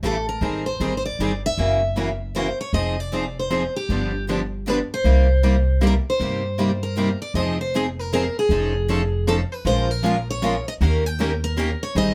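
Fiery and swinging, this short cut from a longer piece is acoustic string swing in the jazz manouche style, moving at 156 BPM in a swung 3/4. It opens in C minor and shifts to F minor at 7.4 s, where a new section begins, with chords such as Abmaj7, F#7, Fm7 and G7 giving way to F7alt, Bbm7 and Eb7. Two picked steel-string acoustic guitars play the accompaniment throughout, while a third picked guitar carries the melody from 0.1 s. All three guitars sound bright with fresh strings: two are concert instruments placed up front with audible finger squeak, and one boxy parlour guitar sits in the background. The pizzicato upright bass is woody, warm and thumpy, strung with steel and sitting up front. The band plays live in one room, with a moderate studio reverb adding a touch of space.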